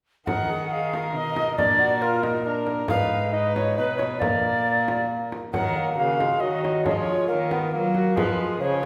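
This is a renaissance-style consort dance in triple metre, courtly yet rustic in mood, taken from a longer piece. An alto recorder carries the melody up front, its airy, woody tone marked by a chiff on tongued notes and an expressive vibrato. Beneath it, a single bowed viola plays a nasal, reedy second line with period-style gut strings, while a bassoon with a light vibrato adds a warm accompanying voice. A rich, bowed cello holds the bass, and a frame drum played with soft hands gives a gentle acoustic pulse. All five parts sound together from 0.3 to 8.9 seconds over a minor-key progression, with a diminished chord at 8.2 seconds, and the whole consort sits in the wet reverberation of a church or concert hall.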